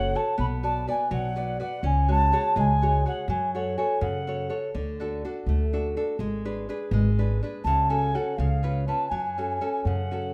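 An alto ocarina with a pure, clay tone and vibrato opens this romantic, passionate Italian serenade, sounding distant as it sings a tongued melody over fingerpicked classical nylon-string guitar and a woody, dark pizzicato upright bass. The piece moves in a straight 6/8 at 82 BPM in F# harmonic minor, with the chords passing from Bm through G#dim to a closing C#7 and F#m. The ocarina falls silent at 4.5 seconds, leaving guitar and bass to carry the folk accompaniment, then returns at 7.6 seconds, all of it set in a moderate recital hall reverb that suggests a short fragment cut from a longer performance.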